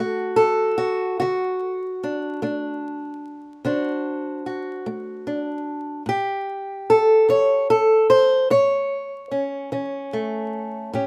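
A slow, straight 12/8 pulse at 49 BPM carries this gritty, soulful fragment of acoustic country blues, where a lone fingerpicked old ladder-braced acoustic guitar with woody, boxy tone and old strings sits up front, spanning A2 to C#5 in a tuning of A4 = 439 Hz and moving from D7 to A7 at 6.1 seconds, all under light reverb and a bed of vinyl crackle.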